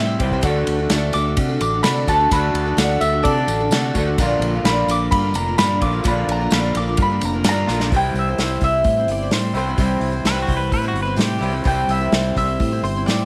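Light reverb and small-room ambience frame this hopeful folk rock and heartland rock excerpt at 128 BPM in a straight 4/4, moving through D, Bb and C. A mellow, round mandolin carries the melody over a shimmering, octave-doubled twelve-string acoustic guitar, a twangy, slightly broken-up electric guitar riff, fingered electric bass, and an up-front, punchy unplugged drum kit played with bundle sticks under dark cymbals. A very quiet, intimate baby grand piano and a jingly tambourine sit in the background until about 7.9 seconds, just after a drum fill at 7.7 seconds, and a clean pedal steel guitar adds a brief second line with volume swells from 10.3 seconds.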